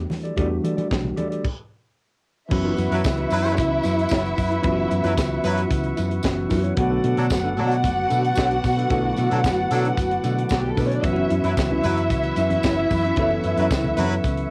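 A danceable, sultry disco groove at 112 BPM, cut from a longer piece and captured as a home cassette recording with light reverb. It opens on Em11 with bell-like tine electric piano, a dark, mellow electric guitar in the background, a round, hollow-body fingered bass and a tight funk kit with a high-tuned snare sitting up front, while very quiet low-tuned congas add thick-skinned touches before a stop from 1.4 to 2.5 seconds. At 2.5 seconds the fuller section arrives on F#7sus4. A lush, woody string section with vibrato carries a second line up front, a tonewheel organ with key click holds sustained chords through a slow rotary speaker, and a jingly tambourine sits distant in a large room. From 2.9 seconds a clear, loose pop-style horn section punctuates with stabs as the harmony moves to Bm7 and back to F#7sus4, where the congas return at 11.0 seconds.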